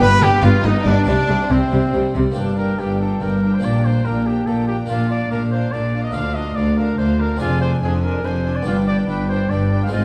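Stormy and driving, this baroque-style concerto movement in G minor moves at 142 BPM in a straight 3/4, and the passage is cut from a longer piece. A clear, distant trumpet with vibrato carries the solo melody in a classical style, set back in a roomy space, while a smooth chamber violin section also plays the melody higher up in the background. A lush, intense symphonic violin section supplies a second line, and an even chamber viola section fills in the harmony from afar. The bass is anchored by a rich cello section and an expressive, close double bass section, both bowed with vibrato, beside a brilliant, mid-forward French-style harpsichord plucking its octave strings as accompaniment. After an opening phrase, a new section begins at 2.4 s and travels from G minor through B-flat, arriving back on G at 8.7 s, the whole heard in a wet recital hall with vinyl crackle over the sound.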